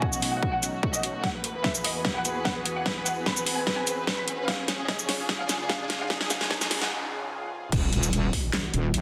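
A saturated, detuned wobble bass bursts in at 7.7 seconds to crown this heavy, menacing half-time wobble dubstep fragment, after a build-up in which an expressive bowed violin section carries the melody through a low-pass filter and dub echo until 6.9 seconds, over a thick, bright sawtooth pad with chorus, phaser and sidechain pumping, a punchy layered electronic kick, an up-front drum kit with a huge snare, metallic hats, handclaps, shaker and crash, and a background riser and noise sweep that give way to an impact at the drop, set in moderate room reverb within a dense, heavily limited modern master.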